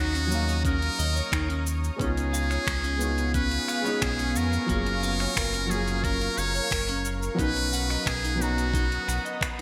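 A lush hall reverb and bright 1980s-style digital sheen frame this short piece of sunset chillout, cut from a longer work and moving at an unhurried 89 BPM in a straight 4/4 with a warm, wistful mood. Up front, a buzzy, thin trumpet with a metal mute carries the melody in a classical solo style, its brilliant tone trailed by delay and shimmer reverb. A dark, mellow baby grand piano with short sustain accompanies it, while a shimmering, ethereal pad with octave-up shimmer and a warbling, detuned vintage character holds sustained chords. Further back, a twangy clean electric guitar picks bright arpeggios through lush chorus and delay. A round, deep analog bass sits prominently beneath, with snaps, hats and shaker from a smooth R&B kit arriving at 0.2 seconds and a knocking, tape-warm electronic kick joining at 0.6 seconds. The harmony drifts from Ebm7 through Db7 and Gbmaj7 to Bmaj7.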